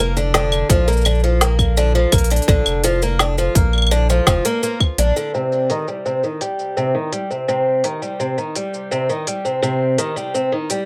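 A picked twelve-string acoustic guitar with old strings and a shimmering, octave-doubled ring plays up-front arpeggios through a low-pass filter and digital delay, taking on a filter sweep from 5.3 s as the harmony moves from Bb to Eb6. This hopeful, delicate folktronica piece in Eb major moves at 84 BPM in a straight 4/4, with a round sine sub bass underneath until 5.1 s and a tight, tape-warm electronic kick joining in the first half. An electronic kit of woody snare, crisp hats, claves and shaker, re-recorded in a small room and low-pass filtered, runs nearly throughout under light reverb.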